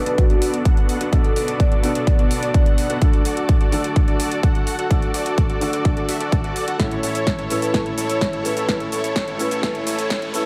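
A dense, detuned supersaw riff, a polished grand piano and a fat analog bass open this powerful, emotional progressive house excerpt at 127 BPM. A mellow soft-mallet vibraphone melody rings over Bm7, D and A chords, while the delayed supersaw and piano pump against a punchy, up-front electronic kick and a big-room kit of snare, metallic hats and shaker. The whole passage is a build-up, with a filter sweeping across the supersaw, a drum fill arriving at 6.8 seconds, the vibraphone returning at 7.1 seconds and a very quiet riser entering at 9.3 seconds, set in a dark production with light reverb.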